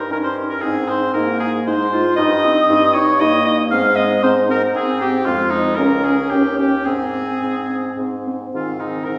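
Graceful and spirited, this short cut from a longer classical-period movement for wind quintet moves at a quick 115 BPM in 3/4 with a rubato feel, set in Ab major and tuned slightly low. The mellow, hollow concert flute carries the melody high above, airy and tongued with vibrato, yet it sits in the background of the blend. The oboe, with light vibrato and a close, up-front presence, sings the second line, while the bassoon anchors the bass with a soft attack and an equally forward place in the mix. The clarinet adds accompaniment from a distant, roomy position, and the French horn, joining at 0.1 seconds, fills in the middle with a vibrato-tinged tone. A wet recital-hall reverb gives the ensemble a spacious glow as the harmony circles between Ab and its dominant, touching Fm and Db before settling home.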